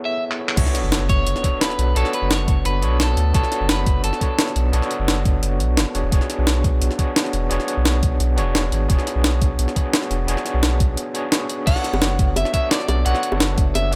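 A straight 4/4 groove at 173 BPM drives this melancholic, rolling liquid drum and bass excerpt in B dorian, tuned to A4 = 441 Hz. A pitched-up, compressed jungle sampler-style kit sits up front, with crash cymbal, handclaps, hi-hat and a medium-tuned snare, its snare, hats, cymbals and small-room sound all softened by low-pass filtering. After a drum fill at 0.3 s, the drop lands at 0.6 s, bringing a knocking, layered electronic kick, a deep, round sine sub bass and a very quiet sub drop. A bright, barky overdriven tine electric piano played through a combo amp carries the chords (Amaj9, Bm9, E13), pulsing with medium tremolo and dub echo. Above it, a twangy, slightly broken-up picked electric guitar sings the melody with vintage 12-bit sampler grit and its own dub echo, returning at 11.7 s after a short break, joined by tight, high-tuned bongos played with soft hands in the background. 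Light reverb and digital ambience give the mix a gentle sense of space.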